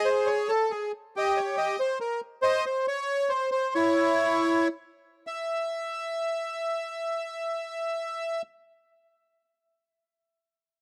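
In a three-beat metre with a free, rubato feel, this short musette fragment drifts between 108 and 143 BPM, and the pulse slows from 2.4 to 5.3 seconds. A lone bandoneon carries the whole passage from start to finish, its reedy, bright voice moving between E4 and E5 in a tuning pitched at A4 = 442 Hz. The mood is whirling yet bittersweet. The opening phrase gives way at 5.3 seconds to a new section that runs to the end of the clip, which is cut from a longer piece. The instrument sits up front in a dry, close 1970s-style studio recording, with a touch of studio reverb around it.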